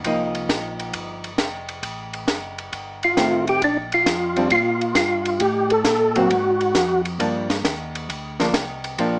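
Soul jazz organ trio with a bluesy, soulful swing, where a mellow tonewheel organ lays down the bass line through chorus vibrato and a slow rotary speaker while a compact cocktail drum kit, dry and up front with dark cymbals, a high-tuned snare and a punchy kick, drives hi-hat, ride, snare and kick. A clean, picked hollow-body electric guitar with a dusky tone comps close to the listener, and from 3.0 to 7.0 seconds a percussive organ melody, round and forward with third-harmonic percussion, sings through its own slow rotary swirl. The whole fragment sits in a moderate studio reverb with a small-speaker character, cut from a longer performance.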